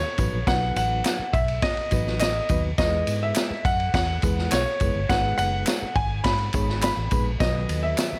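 A warm concert grand piano carries the melody in this joyful, danceable slice of uptempo 1960s-style soul, its intimate tone carrying audible action noise as it moves between C#5 and B5 in E major at 104 BPM. A vibraphone played with soft mallets, motor off, shares that register as a mellow, close-miked second line, sitting very quietly beneath the piano. From 0.2 seconds a reedy, slightly worn electric piano with a fast tremolo fills out the accompaniment through its built-in speakers, while a dark, foam-muted fingered electric bass adds a round low end. A punchy vintage drum kit sits up front with a high-tuned snare, kick and dark ride cymbal, joined by a dry egg shaker and group handclaps with the tambourine. The chords move from B to E at 2.8 seconds and to G#m at 5.1 seconds, all under a light reverb in this short cut from a longer piece.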